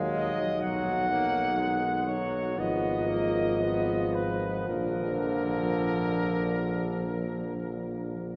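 Heard from further back in a cathedral-like space with a long, wet reverb, this brief cut from a longer classical piece is a yearning, melancholic hymn for brass band, moving slowly and freely at around 53-65 BPM in 4/4. A mellow cornet carries the melody with light vibrato and a soft attack from 0.2 s, set up front over a tight, dark French horn section on the second line. Beneath them, a brilliant trombone and a euphonium with vibrato in the background fill out the accompaniment, while a warm tuba anchors the bass through chords moving from Ebm to B, Abm69 and Bb.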